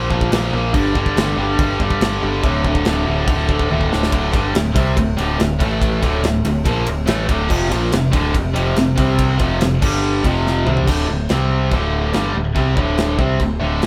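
Dark and heavy, this short heavy metal excerpt drives forward in a straight four-beat feel, with a guitar, bass and drums playing together in one room under a light reverb. A tight, distorted electric guitar carries the riff up front, its bright, picked tone double-tracked for extra weight as it moves through power chords like Bb5, G5 and D5, with a brief D minor chord along the way. Beneath it, a picked electric bass runs through the whole passage with a growly, direct edge. An acoustic studio kit with a small-room sound, a medium-tuned snare and a tight kick joins at 0.1 seconds, colouring the groove with china, crash and ride cymbals plus toms. Drum fills at 3.7 and 10.5 seconds mark the turns into new sections, the last settling back onto D5 and C5 before the recording cuts off.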